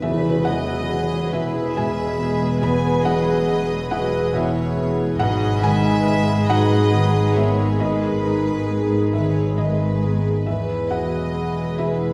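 In a slow, rubato 6/8, this moving, uplifting cinematic film-score passage opens with a full-ensemble accent while a shadowy tam-tam rumbles through its first 3.4 seconds. A very quiet, dark-toned violin section carries the melody in soft, sul tasto strokes, joined by a second, clear and floating violin line, a pure straight-toned flute, and a distant, very quiet clarinet. Beneath them sit a felt-muted upright piano, a background viola section, sustained chords from a mellow French horn section, ringing fingerpicked harp arpeggios, and low cello and double bass sections, all heard from further back in a reverberant recital hall.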